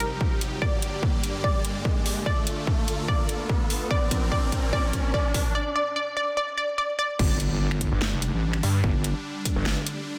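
Heavy wobble dubstep in a chaotic half-time feel, this fragment of a longer piece builds with a detuned unison pluck melody carrying digital delay over huge, pumping supersaw chords, a metallic-hatted drum kit with a towering snare, a punchy layered kick and a background riser, then drops at 7.2 seconds into a saturated, chorused wobble bass and a snarling, growling distorted saw bass from 7.9 seconds, all set in a lush hall reverb and a dense, heavily limited master.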